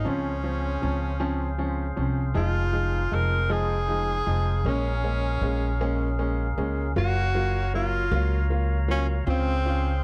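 A clear, punchy tenor saxophone carries the solo melody up front with pop-style vibrato in this heartfelt, swaying six-eight pop ballad excerpt, backed by a smooth, vintage upright piano, a fat tonewheel organ holding sustained chords with key click and subtle chorus, and a woody, growly pizzicato upright bass, inside a dark, warm studio reverb as the harmony moves from Dbmaj7 through Fm7 and Bbm7 to Gbmaj7 and home again.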